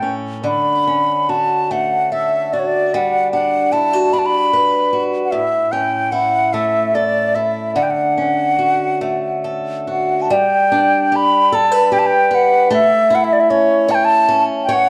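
Celtic folk slow air in a pastoral, tender mood, cut from a longer piece, where a close-miked, airy wooden flute sings the rubato 6/8 melody with tongued notes and vibrato over a boxy, picked swing-style acoustic guitar, audible finger squeaks and all, moving through Dmaj7, Gmaj7 and A, both up front in a dark, warm production bathed in moderate recital hall reverb.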